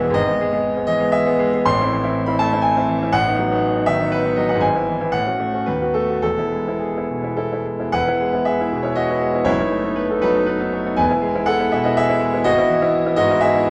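A brilliant, up-front concert grand piano opens this lyrical, passionate romantic character piece in E major, moving in 3/4 with a flexible rubato feel at roughly 101-125 BPM. The solo part ranges from deep bass to a bright treble, its long sustain ringing into a moderate concert hall reverb, while harmonies such as E/G#, Am and B7/A lead to a cadence on E before the opening section returns at 7.9 s. The whole passage, cut from a longer piece, carries the worn, warbling pitch drift of old cassette tape.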